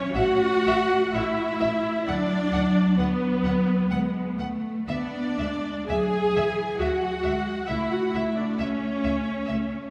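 A wet concert-hall reverb surrounds this excerpt from a slow romantic movement for string orchestra, its serene mood unfolding in a flexible, rubato triple time. The viola section sits up front with a smooth, vibrato-rich accompaniment, the cello section gives a close, focused bass line, and the double bass section adds a distant, expressive foundation, while one violin section sings a symphonic melody alongside a second, richer violin line. The harmony moves gently from A5 through Bm/D and E7/D to A/C#.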